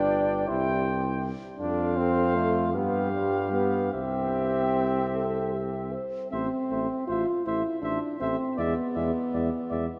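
A wet cathedral reverb with a 4.2 s decay surrounds this triumphant, stately classical brass quintet in a rubato 6/8 at 49-54 BPM, where a distant, warm trumpet carries the melody with light vibrato over a mellow flugelhorn second line, an accompaniment of punchy French horn and trombone with vibrato, and a soft-attacked, up-front bass trombone, as the harmony turns from C major to A minor at 6.3 s.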